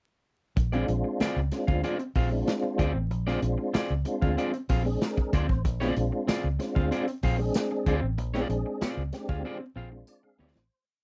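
A gritty, saturated breakbeat kit with a tight kick and a ghost-noted groove drives this strutting Bb mixolydian funk piece at 95 BPM, joined by a round, foam-muted bass riff with chromatic approach notes, twangy sixteenth-note rhythm guitar scratching at the edge of break-up, and a mellow tonewheel organ firing rootless stabs through fast rotary and chorus vibrato with a short fill at 4.7 seconds, while a jingly tambourine arrives on the backbeat at 6.3 seconds and the close, dry 1970s-style sound with vinyl crackle fades out from 8.2 seconds under a closing drum fill.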